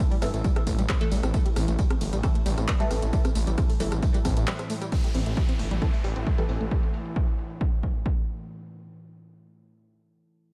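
A punchy, tape-warm electronic kick sits up front in this hypnotic, driving peak-time techno at 134 BPM in A minor, joined by a thick, menacing detuned saw bass with sidechain pumping, an overdriven analog drum machine of handclaps, hi-hat, ride, crash, rim click and tambourine, a tight sequenced synth riff with chorus and diffuse delay, muted, nasal dub chord stabs through a phaser, and an evolving, warbling analog drone in the background, all in light reverb, until the drop gives way at 4.9 seconds to a filter sweep on the drums and a downlifter.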